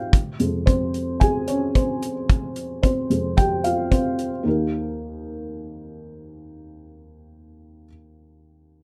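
A felt-muted upright piano carries this hopeful, anthemic piano-driven pop piece, its thick felt and audible action noise giving an intimate, mellow sound that sits up front and spans Eb2 to Ab5. The music moves at 111 BPM in a straight 4/4, and the tuning sits at A4 = 438 Hz. A modern acoustic studio drum kit joins almost at once with hi-hat and a tight kick, heard in a small room with a rolled-off top, and it drops away at 4.3 seconds. The harmony rests on F minor, then moves to Eb at 4.5 seconds, as the piano carries on through to 8.8 seconds. Light reverb and a rough home-demo mix give this fragment, cut from a longer piece, an unpolished, close-up character.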